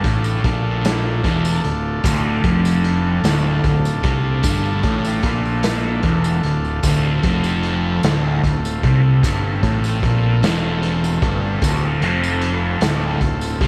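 A distorted, double-tracked fuzz guitar riff with phaser sits up front from the first moment of this dark, hypnotic psychedelic rock excerpt in D minor at 50 BPM in 6/8, sounding together with round, overdriven fuzz bass, a raw garage drum kit with punchy kick and medium-tuned snare in a bright stone room, and buzzy sustained combo organ chords, while a jingly, close tambourine sits low in the mix over a single held Dm chord and light small-room reverb.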